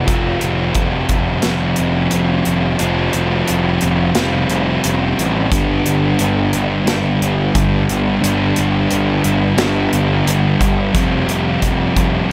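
A straight 4/4 pulse at 88 BPM settles into a half-time feel, giving this short cut from a quiet-loud alternative rock piece a dark and cathartic weight. Up front, a thick, double-tracked fuzz guitar plays the picked riff, its distorted tone warm, moving from Fsus2 to G at 5.5 seconds and back to Fsus2 at 11.0 seconds. Beneath it, a picked electric bass holds the low end in a narrow range near F1 to A1, its overdriven fuzz sounding bright and growly, taken direct and through an amp. A big acoustic rock kit recorded in a studio room lays down hi-hat, a medium-tuned snare and a punchy kick. Moderate studio reverb lends the whole mix a sense of space, and the parts run together from the opening moment to about 12 seconds.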